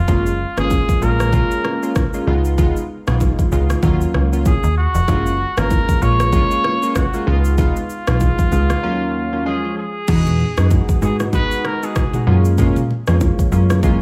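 Afrobeats at 96 BPM in F# major, joyful and romantic, with a clear trumpet singing a vintage pop-style solo melody of scooped notes and light vibrato until 12.3 seconds over punchy, funky plucked analog bass, round detuned analog keys with chorus, an up-front electronic afro-pop kit with a deep kick, shaker, rim clicks and toms, and very quiet acoustic congas and bongos, all set in digital studio ambience, with a break from 8.8 seconds before a shift to Emaj7 at 10.1 seconds in this cut from a longer piece.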